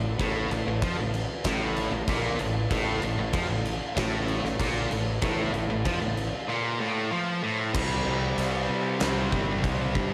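Aggressive and menacing, this hard rock fragment, cut from a longer piece, stacks three picked electric guitar riffs: a bright, high-gain distorted guitar with slapback echo, an overdriven semi-hollow guitar sitting in the background, and a tight, double-tracked distorted guitar, also with slapback echo, that drops out at 7.7 s. A fuzz-soaked fingered electric bass adds overdriven grit beneath them. From 0.2 s a huge, up-front arena drum kit hits with a fat snare, punchy kick and crash cymbal under a rolled-off top, all set in a lush hall reverb that gives a big arena sound as the harmony shifts at 7.8 s.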